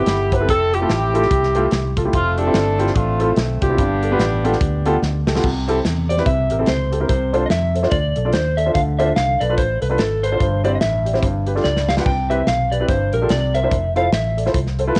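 A warm, smooth-topped jazz horn section carries the melody of this soulful, uplifting uptempo gospel excerpt until 5.2 seconds, and a slightly broken-up electric slide guitar takes over the tune from 6.1 seconds, both with a cassette-tape colour. Underneath, a clear grand piano with long sustain, a dark, round fingered electric bass and an airy, polished studio drum kit with a punchy kick and medium-tuned snare drive a swung 145 BPM groove in C major, with drum fills around 5 and 12 seconds. The home-recorded cassette sound sits in a small room, its top end dulled.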